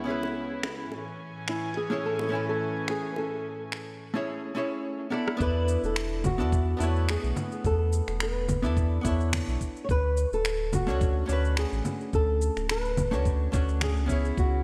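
Sunset chillout at 107 BPM with a blissful, relaxed swing, where dark thumb-plucked flamenco guitar carries the melody with audible finger squeak over clean, compressed hollow-body jazz guitar accompaniment, both touched with analog delay, while a reedy, gut-string chamber string section moves through a filter sweep before dropping out at 4.2 seconds, tight high-tuned bongos play in the background, overdriven electronic snaps, rim clicks, shaker and congas keep time, and after a drum fill a round sine sub bass and a gritty, thumpy kick drop in at 5.4 seconds, all bathed in a dreamy, reverb-soaked hall.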